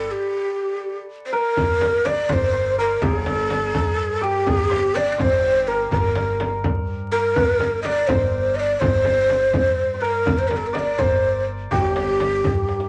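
Longing and hypnotic, this Persian modal ensemble piece moves at 83 BPM in a straight 6/8, set in the G dastgah shur and cut from a longer work. A breathy, mellow ney carries the melody up front, its end-blown reed cane tone close-miked with a crisp, chiffy attack and vibrato, its playing unsteady. Beneath it, a bright, shimmering santur rings out a second line while a woody, thumpy pizzicato upright bass anchors the low end from the start. At 1.6 seconds the percussion enters: a deep, large frame drum heard close and dry, and a compressed, saturated tombak sitting in the background. A drum fill arrives at 12.7 seconds just before the cut, and the whole recording is wrapped in a wet studio ambience with a layer of vinyl crackle.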